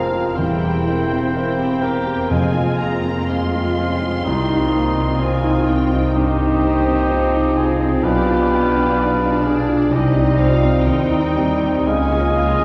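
A clear, open baby grand piano carries the melody with long sustain over a passionate, tragic romantic orchestral passage at a rubato 63 BPM in 4/4, alongside a lush, vibrato-rich violin section on a distant upper line, a second background violin section, a mellow oboe and a very quiet clarinet on secondary lines, a faint bassoon and viola section in accompaniment, soft sustained French horn chords, mellow trumpet stabs, a close cello section and a bowed double bass section on the bass, and hard-mallet timpani striking F2 between 2.3 and 3.7 s, all heard from further back in a reverberant concert hall as the harmony moves from C7/E through Fm, Cm and G7/B to Db.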